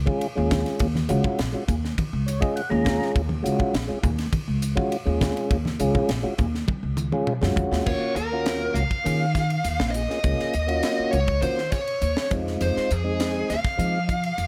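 A woody, thumpy upright bass played pizzicato on gut strings sits up front in this nocturnal, funky electric jazz fusion piece, alongside a tonewheel organ with key click, light overdrive and a slow rotary speaker that adds a brief fill around 2.0 seconds. A crisp, airy studio drum kit with a high-tuned snare and tight kick drives the groove, while damped, low-tuned congas murmur in the background until a drum fill leads into the next section. At 7.9 seconds a dark, distorted, bluesy lead guitar takes the melody, and the harmony moves from Ebm11 to Fm7 near the end under a light reverb.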